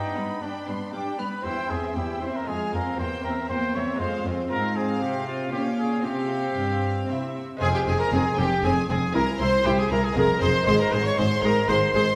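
A reverberant hall sound frames this dramatic, driving baroque-style concerto movement in triple time, where an up-front, vintage-toned trumpet and a focused high violin section carry the melody over a lush second violin line, smooth violas, a delicate fingerpicked gut-string lute in the background and bowed cellos, with a distant double bass section joining the bass at 7.6 seconds.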